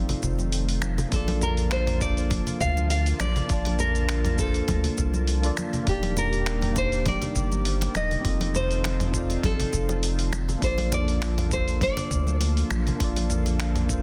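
Sunset chillout in Bb major at 101 BPM with a gentle 16th-note swing and a blissful, warm mood, this excerpt sets a fingerpicked nylon-string guitar melody with tape echo over clean tine electric piano, a lush, detuned unison pad with chorus, and a round, deep analog bass up front, while a gritty, overdriven sampler-style kit of finger snaps, hi-hat, shaker and toms joins close dry congas and a thumpy electronic kick, the latter two sitting in the background, all under light reverb and a dense, heavily limited master, moving through F7, Bbmaj7, Ebmaj7 and back.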